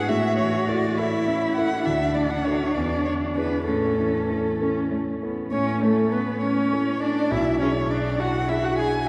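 A quick classical-period movement for piano quartet, this graceful and spirited excerpt moves in a straight 6/8 at 67 dotted-quarter beats per minute in A major, tuned to A4 = 442 Hz. The violin carries the melody up front and close, its tone warm with vibrato, a soft attack and expressive portamento. Beneath it the cello sings a second line in a rich, expressive voice that also slides between notes. The grand piano supplies accompaniment with a natural, up-front sound, and the focused viola enters at 5.5 seconds, sitting distant in the background. The harmony moves from A through D and E7 back to A, later touching E7/B, while a long cathedral reverb of 4.4 seconds bathes the dark, warm production in a wet, spacious halo.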